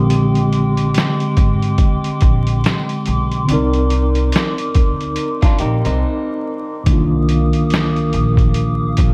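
Reflective and hazy, this lo-fi hip hop fragment rests on a mellow tine electric piano, a woody pizzicato upright bass and a muffled, pitched-down sampler-style drum kit with a thumpy kick sitting up front, while a warbling, detuned tape-like pad with chorus hangs behind and a slightly broken-up electric guitar through a small old amp adds a brief second line with analog delay from 5.4 s, the dry mix carrying a steady bed of vinyl crackle.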